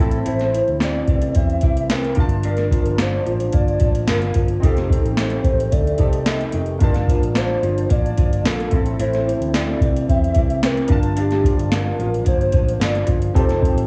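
A hazy cassette home recording with small-room ambience carries this mellow indie and bedroom pop excerpt, where a hollow, woody clarinet-like synth lead sings the melody through ensemble chorus, tape echo and plate reverb over glossy retro synth keys with tremolo in the background, a slightly broken-up, lo-fi electric guitar through a small old amp with subtle chorus and vibrato, a round, foam-muted fingered bass, and an overdriven analog rhythm box with deep kick, crisp snare and metallic hats that sits up front from 0.1 s.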